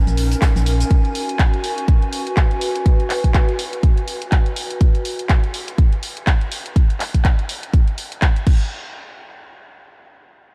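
Piano house at 123 BPM in G# minor, tuned to A4 = 438 Hz, with a swung 16th feel and a bittersweet yet energetic mood, cut from a longer piece over A#m7 and G#m7 chords. A warbling, nostalgic lo-fi pad with chorus, built-in reverb and sidechain pumping carries the harmony until 4.8 s. A hollow, dark organ-like FM bass with a fast, decaying attack and sidechain pumping sits up front only briefly at the start, alongside a very quiet brushed snare and hi-hat kit and a house kit of bright hats, handclaps, shaker and crash cymbal that enters at 0.1 s. A punchy, up-front electronic kick joins at 0.4 s, all in a light small-room reverb.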